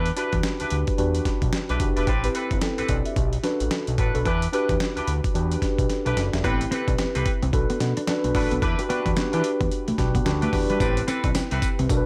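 Swung sixteenths at 110 BPM drive this slick, punchy new jack swing excerpt in E minor: a gritty, overdriven sampler-style drum kit with a thumpy kick, medium-tuned snare, hi-hat and tambourine sits up front over a fat sawtooth-and-square analog bass with a moving filter notch, while a mellow tine electric piano with subtle chorus carries the Em7, Am9 and Bm7 changes, a tight vintage horn section adds jazz-style stabs with light vibrato and a touch of delay, and after a drum fill at 5.9 seconds a clean, picked electric guitar riff enters in the background at 6.6 seconds, the whole set in light reverb.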